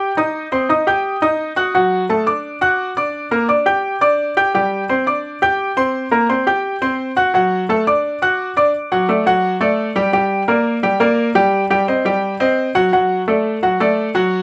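In a straight 4/4 at a brisk 172 BPM, this short Latin fragment of a longer piece burns with a fiery, passionate energy. A lone baby grand piano carries everything, ranging from F#3 up to G6 with a bright, brilliant, worn tone. It sits up front and intimate, close enough that the noise of its action can be heard beneath the notes. The harmony circles through Cm, D and Gm, passing briefly through Csus2 and C5 before a new section takes over at 8.7 s and returns to Gm, Cm and D. A moderate studio ambience with a short half-second decay frames the piano until the fragment breaks off at 14.4 s.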